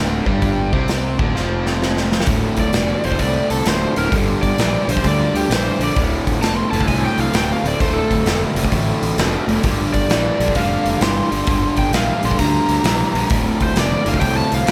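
An overdriven slide guitar and a bright, double-tracked stack riff open this gritty, heavy blues-rock and southern-rock excerpt in a swung four, with a round, fuzzy fingered bass underneath and a punchy, up-front drum kit arriving at 0.3 seconds, whose fill leads into a slide guitar solo at 2.3 seconds as a very quiet, thick tonewheel organ with rotary speaker and key click joins on sustained minor-seventh chords, all set in a lush hall reverb with slapback and tape echo on the slide for a big arena sound.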